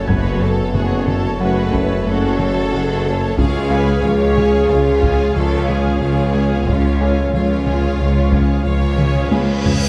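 A taiko ensemble struck with heavy sticks sits very quiet in a small room, pulsing in an uneven five-beat metre with a straight feel beneath this vast, tense excerpt of a hybrid orchestral and electronic film score, built on a move from F#m to C#. Lush bowed violins carry the melody with intense vibrato, a second violin line and rich violas sit behind it, and a dark, tight French horn section holds sustained chords until 9.3 seconds. The low end stacks a deep, clean sine sub bass, a smooth sawtooth-and-square synth bass riff, a focused double bass section, a distant, even cello section and a solo tuba with light vibrato. A moody, detuned ambient pad with wave-folding and ring modulation swells in slowly, while a round, tine-like FM pluck with chorus runs arpeggios and a very quiet grand piano adds texture high above. Near the end the taiko plays a fill from 9.0 seconds and a huge reverse cymbal rises at 9.2 seconds, all set in a moderate scoring-stage reverb with a dark production.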